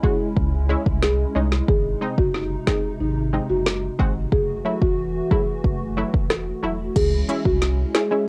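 Hypnotic and tough, this dancehall excerpt moves at 91 BPM in C# harmonic minor, cycling through C#m, G#, F#m7 and back to C#m. A buzzing, woody marimba played with soft mallets carries the melody over punchy, detuned sawtooth chord stabs and a hollow, flute-like pad, the stabs and pad both pumping against the sidechain and coloured by chorus and plate reverb. Up front, an electronic afro-pop kit with a deep kick, a snare that knocks like wood, crisp hats and crash anchors the groove, while a thick, saturated sub bass enters at 0.4 seconds, all under the soft grit of a cassette home recording.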